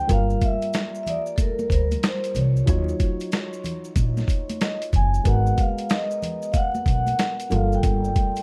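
A nocturnal, cool jazz-hop excerpt opens with up-front vibraphone ringing metallic with slow motor vibrato over a dark, boxy upright piano with audible action noise, joined at 0.1 seconds by woody pizzicato upright bass, a gritty, pitched-down boom bap kit with thumpy kick, and bright, saturated maracas and congas in the background, all swung on the sixteenths through Gm7, Ebm9 and Abm9 amid vinyl crackle, studio reverb and a dark, warm production.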